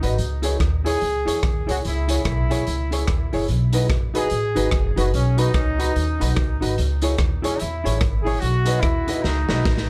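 This upbeat, joyful ska passage opens with the whole band at once: a distant, roomy horn section carries the melody with light vibrato, while a clean, fingered hollow-body jazz guitar sits in the background with its accompaniment. A clear, slightly detuned upright piano adds worn, woody stabs, and the horns, guitar and piano each carry tape echo. Up front, a pizzicato upright bass on gut strings gives a thumpy low end. Beside it, a raw garage kit of hi-hat, kick, rim click and snare sounds saturated and gritty in a small, pumping room, with a punchy kick and rolled-off top. The swung groove moves between C#m and B, and a drum fill arrives at 9.2 seconds before the cut ends at 9.9 seconds, all set in light reverb with a dark, warm production.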